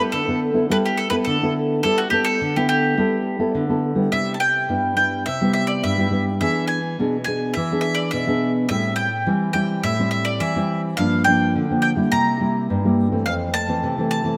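Samba at 105 BPM in a straight 4/4, lively and festive, this short cut from a longer piece opens in G major and moves to C major from 4.1 seconds. A nylon-string guitar carries the accompaniment from the start, its dark, full-bodied tone thumb-plucked with audible finger squeak and a deep classical character, sitting up front. A bowl-back mandolin takes the melody from 0.1 seconds, picked on double strings with a bright, acoustic sparkle, also placed up front and reaching as high as Bb5. The harmony runs from a G6/9 through Cmaj7, E7, Am7, Gm7 and C7 before landing on Fmaj7 at 13.3 seconds. A moderate, lush hall reverb surrounds both instruments in a rough home demo mix.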